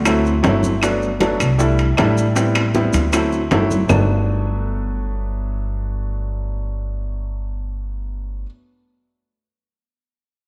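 Afro-Cuban jazz in G major moves at a lively, danceable 156 BPM in straight 4/4, heard as a short passage lifted from a longer piece. Up front, a pizzicato upright bass with a woody tone on steel strings holds the low end from G1 to D2, while a concert grand piano, intimate and natural with audible action noise and deep bass, comps in the middle register through D7, Gmaj7, C69 and Am7. A percussion section of round, low-tuned bongos and thick-skinned congas, both played with hard hands and kept very quiet, joins ringing metal-shell timbales, compressed and saturated claves, and grainy, mellow maracas sitting in the background. The percussion drops out at 4.0 s, leaving bass and piano to carry the second section, which opens on Gmaj7 at 3.9 s, and both continue until 8.4 s. A moderate echo chamber reverb with a 1.8 s decay gives the whole a roomy, lingering sheen.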